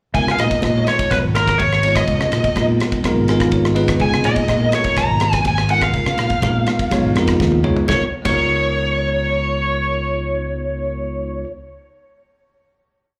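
A soaring, funky jazz fusion piece at 124 BPM in Db mixolydian opens on a Db13 chord as a smooth, overdriven lead guitar plays a free, up-front melody with slapback and tape echo over syncopated, bell-like electric piano stabs in rootless voicings with phaser, a punchy fingered bass riff, a damped 70s drum kit with dark cymbals playing a samba groove, and very quiet, high-tuned congas, all heard as a live club gig through the venue's PA, with an electric piano fill at 3.0 seconds and a drum fill leading into a final chord at 7.9 seconds.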